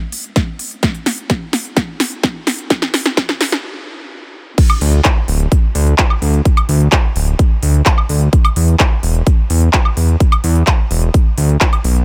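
A punchy, up-front electronic mix opens this short cut from a longer festival progressive house track, triumphant and anthemic at 128 BPM in a straight 4/4. For its first 4.6 seconds the music builds as an overdriven big-room drum kit rolls through a fill of snare, crisp hi-hats, handclaps, woodblock and crash cymbal, joined by a layered electronic kick from 0.4 seconds. The fill breaks off at 3.6 seconds for a brief stop before the drop lands at 4.6 seconds. Just after, at 4.8 seconds, a fat, detuned sawtooth bass arrives, thick and evolving between D1 and E2, its sustained notes pumping with sidechain compression, a filter sweep and a fast attack. A high-passed digital ambience hangs over the mix, and the drums and bass carry on together to the end of the cut.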